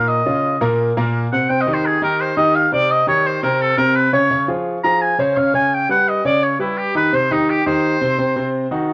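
A home cassette recording gives this short jazz passage a tape grain, with a moderate spring reverb and the air of a small room around it. The mood is sophisticated and sunny, moving at a brisk 170 BPM in a straight 4/4 and tuned slightly high, to A4 = 443 Hz. A clear oboe carries the melody as a solo from the opening, playing in a classical style with light vibrato and a roomy, slightly distant quality even though it sits up front. Beneath it, a concert grand piano supplies warm, natural accompaniment with deep bass, ending at 8.9 seconds. The harmony begins on Bbm and passes through chords such as Cm, Db and Ebaug7 across two matching statements of the same section, the second starting at 4.3 seconds. It is cut from a longer piece.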